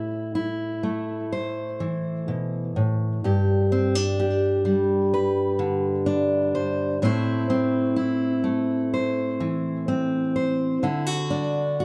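Warm and peaceful, this short fragment of solo folk guitar drifts at a rubato 63 BPM in 4/4, with the fingerpicked steel-string acoustic guitar playing alone from start to finish across a span from G2 to C5. The guitar sits up front with a warm, auditorium-style body, framed by light reverb and tuned a touch above standard pitch. The harmony moves from Am to G at 3.2 seconds, back to Am at 7.0 seconds, and reaches D at 10.8 seconds before the clip ends.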